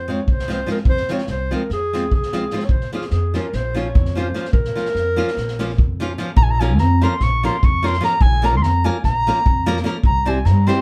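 Balkan folk in 9/8 from a wedding band, this restless, bittersweet excerpt sets a mellow, classical-style clarinet solo up front over a woody, thumpy pizzicato upright bass on gut strings, also up front, with a bright, full-bodied fingerpicked nylon-string guitar filling in the accompaniment. An unplugged drum kit played with bundle sticks sits distant and roomy, its tight kick and medium-tuned snare softened by a rolled-off top. The band plays live together in a moderately ambient studio room as the harmony moves from F minor to B-flat minor, reaching a C chord at 10.0 seconds near the close of the passage.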